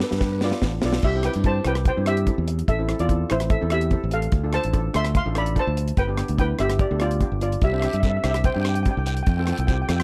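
A bouncy, sunny calypso, cut from a longer piece, opens with a drum fill from a deep reggae kit that is dry and acoustic, with dark cymbals, a high-tuned snare and a tight kick across its crash, hi-hat, kick, rim click and snare. Two steel pans played with hard rubber sticks ring metallic and shimmering: double seconds carry the melody with a warm, boxy small-room tone, while cello pans give an airy accompaniment beneath. A fingered electric bass enters at 0.1 seconds, direct and punchy. The bass and cello pans share a bright edge, and the drums, bass and lead pan sit up front. A raspy guiro scrapes in the background at the start and returns at 7.6 seconds, over a close, 1970s-style studio sound with little reverb and a chord run from G7 through C, Am, Dm7, G and Csus2 to F.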